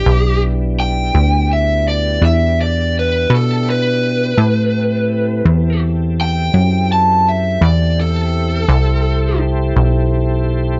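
A punchy, nasal analog bass with a fast, decaying filter pluck sits up front in this mournful, brooding slow blues, moving at 56 BPM in 12/8 from Em7 to Am7 at 4.4 seconds. Over it, an overdriven electric lead guitar through a small cranked amp picks a melody with slapback echo until 9.4 seconds. A smooth, clean tonewheel organ holds chords through a slow rotary speaker and chorus vibrato, all within a dark production with light reverb.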